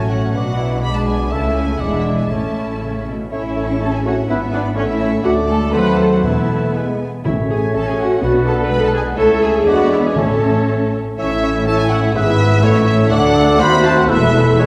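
A rich, vibrato-laden chamber violin section carries the melody in this lively, spirited, quick classical-period excerpt in A major and 2/4, moving at 115-128 BPM with a rubato feel. A lush, distant symphonic violin section and a soft-edged solo oboe add second lines, and a hollow, airy flute joins them at 3.3 s. An expressive viola section, a background bassoon, a bowed double bass section and a cello section fill out the accompaniment and bass, with a tight French horn section adding sustained chords from 3.3 s, hard-mallet calf-head timpani arriving at 6.2 s and a very quiet, mellow trumpet adding stabs from 11.2 s, all heard from further back in a reverberant recital hall.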